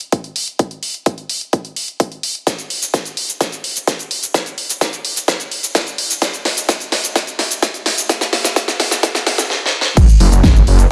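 A light reverb and a high-pass filter frame this anthemic, powerful cut from a festival progressive house track in straight 4/4. It opens as a build-up, led by a big-room electronic drum kit whose huge snare sits up front beside hi-hat, cabasa and crash cymbal, all given a small room ambience. A punchy, layered electronic kick drum joins at 0.1 seconds and anchors the passage at the front of the mix. From 2.5 seconds a long drum fill drives the build, followed by a brief second fill from 9.5 to 10.0 seconds. At 10.0 seconds a thick, lush detuned sawtooth bass arrives with a fast attack, sustained unison tone, chorus shimmer and sidechain pumping, giving the closing moments a powerful low end.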